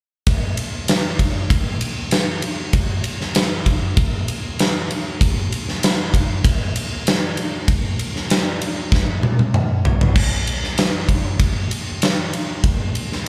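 Heard through a live venue's PA with a touch of club reverb, this driving, gritty rock passage, cut from a longer piece, features a huge acoustic arena drum kit placed up front, with a punchy kick, a fat snare, toms and bright crash and ride cymbals ringing into the hall. The straight 4/4 groove runs from 0.3 seconds, with a drum fill from 8.9 to 10.2 seconds that leads into a new section before the kit stops at 13.2 seconds.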